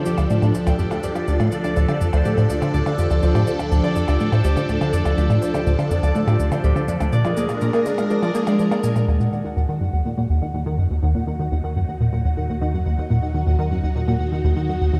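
A straight 4/4 pulse drives this mysterious, expansive piece of sequencer-driven ambient space music, heard in a wet, echo-heavy chamber, where a punchy, funky analog bass riff sits up front beneath swirling, phased string-machine chords, a pulsing, detuned gated texture, ringing fingerpicked concert harp arpeggios that stop at 10.9 s, and tape-touched cabasa and electronic percussion blips that drop out at 9.1 s, when a round sine sub bass enters in the background and the strings fade in.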